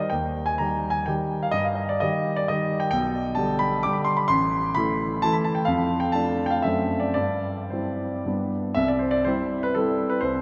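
Heard through a drenched cathedral reverb with a six-second tail, the recording places the listener in a vast, echoing space whose highest frequencies are rounded off, while the grand piano itself stays polished, present and up front. This short cut from a longer classical piece is a romantic dance in triple time, proud and rustic in mood, with dotted rhythms giving it a strutting lilt. The solo piano plays throughout, ranging from deep bass notes up into the bright upper register, and its pulse bends freely with rubato. The harmony opens on E-flat, then moves through A minor, D minor and a D7 before settling onto G. Around 8.8 seconds the music arrives on C major and turns toward a new section, which the excerpt cuts off soon after.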